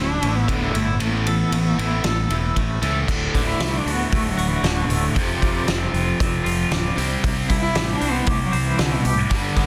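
A dense, heavily limited modern mix with moderate studio reverb frames this restless, cathartic excerpt of quiet-loud alternative rock at 116 BPM in 4/4, opening in half time over suspended chords before the loose indie kit enters at 0.2 s with a fat snare, punchy kick and dark cymbals. A round, fingered electric bass anchors the low end while a twangy, clean electric guitar picks tremolo-soaked arpeggios, and two picked guitars grind out riffs in the background: one biting and overdriven, the other scooped, high-gain and distorted. From 3.1 s a single bowed cello takes an expressive, nasal solo, its vibrato, portamento and soft attack trailed by tape echo.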